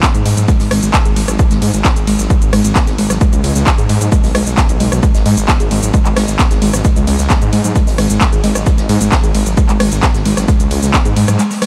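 Driving and industrial, this peak-time techno excerpt pits a punchy, up-front electronic kick and an overdriven techno kit of handclaps, smooth hats, ride, rim clicks and shaker against a thick, menacing detuned saw bass that pumps to the sidechain, while a woody, wave-folded pluck riff with chorus and analog delay rides on top, a very quiet swinging big-band kit of hi-hat and snare sits far back in a big, natural room, and the bass drops out into a break at 11.4 seconds.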